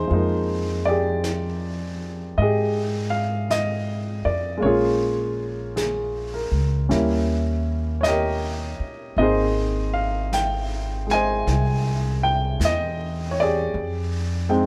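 A slow swing at 53 BPM in 4/4, its eighth notes gently lilting, carries this intimate, tender jazz ballad fragment. Played pizzicato and sitting up front, the upright bass has a woody, steel-strung tone, holding the low end between Ab1 and Ab2 throughout. The clear upright piano, also close and present, voices the accompaniment from Eb3 to Ab5 over a progression that moves from Fm11 through Bbm7, Eb7b9 and Abmaj7 before settling on Fm9 at 13.7 seconds. Entering at 0.1 seconds, the brushed drum kit sits distant and roomy in a small space, its medium-tuned snare and hi-hat softened by a rolled-off top and kept well beneath the other two parts. Light reverb and a dark, warm production wrap the trio in a hushed, late-night glow.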